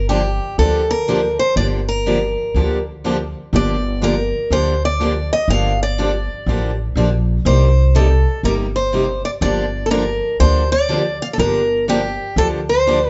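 Bittersweet and fiery, this excerpt of acoustic jazz manouche swings at 122 BPM in G minor, with a bright, boxy parlour guitar carrying the melody up front over a woody, thumpy gut-string upright bass played pizzicato, while two picked steel-string guitars accompany through Gm7 and Cm7 changes, one a parlour and the other a jumbo set in the background, both with audible finger squeak, and the band plays live in one room with light reverb and a softened top end.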